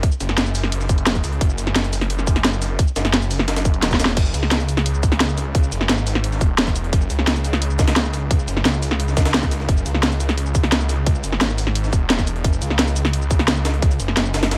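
Driving straight 4/4 at 174 BPM, this dark technical drum and bass cut opens on a drop, with a tight, up-front electronic kick and a layered drum kit whose cracking snare, hi-hat, shaker and crash cymbal sit in a small room, while a gritty, pitched-up jungle sampler-style kit with overdriven hi-hat and snare rides in the background. A snarling distorted saw bass enters at 0.2 s, growling between E1 and C#2 with a detuned, resonant unison tone and a moving notch. After a drum fill at 3.8 s, the drop resumes at 4.2 s, keeping the mood mechanical and tense in this short, dry excerpt from a longer piece.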